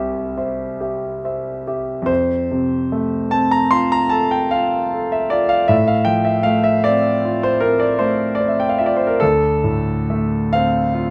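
Romantic classical nocturne for solo piano in F major, dreamy and tender, a clear, up-front concert grand unfolds in a slow, rubato 9/8 at 43-53 BPM, its deep bass and long sustain ringing through light reverb as close, detailed miking catches every note, opening on a C chord before the second section begins at 2.1 seconds and moves through F and F/A to a Dm7 at 9.2 seconds in this short cut from a longer piece.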